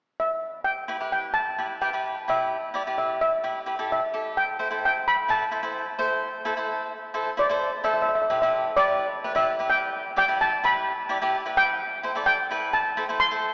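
A shimmering, metallic lead steel pan, played with medium rubber sticks and miked close so it sounds full, dry and up front, carries the melody of this driving, intense calypso in a straight four-four feel, entering at 0.2 seconds. An acoustic cavaquinho joins at 0.9 seconds with crisp picked accompaniment, sitting just as far forward while the harmony moves between E minor and A minor, and a second section at 8.1 seconds closes on A minor seventh. The recording is cut from a longer piece and set in a lofty, cathedral-like space with a long reverb tail, though it comes across with a small-speaker sound.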